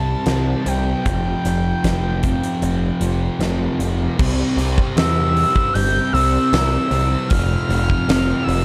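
A double-tracked fuzz guitar sits up front in this short, wistful and blissful clip of shoegaze-leaning dream pop rock, playing a dark, distorted picked riff in the low-to-middle register, thickened by lush chorus. Beside it, a growling picked electric bass, amped and overdriven, holds down the low end and is just as forward in the mix. A huge arena drum kit enters at 0.3 seconds, with a fat snare, punchy kick, hi-hat and bright crash cymbals ringing in a hall-like space. High above, a breathy, flute-like synth lead floats a soft, sustained melody, its gentle attack coloured by vibrato, chorus, phaser and tape echo. At a slow 77 BPM in straight 4/4 and C major, the harmony moves from C5 to Fsus2, then shifts into a second section at 4.2 seconds on C before landing on F5 at 7.3 seconds, all wrapped in a small-room ambience and a dark, warm production.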